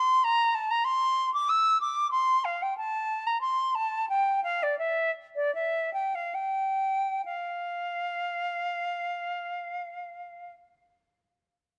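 A solo silver concert flute opens this radiant, serene fragment of a baroque-style classical fantasia in F major, its pure, metallic tone carrying vibrato and tongued notes between D5 and E6 in a rubato 3/4 that ranges from 64 to 97 BPM, slowing from 1.8 to 7.3 seconds before a new section begins and the flute finishes at 10.5 seconds, all captured up close in fine detail with a moderate recital-hall reverb.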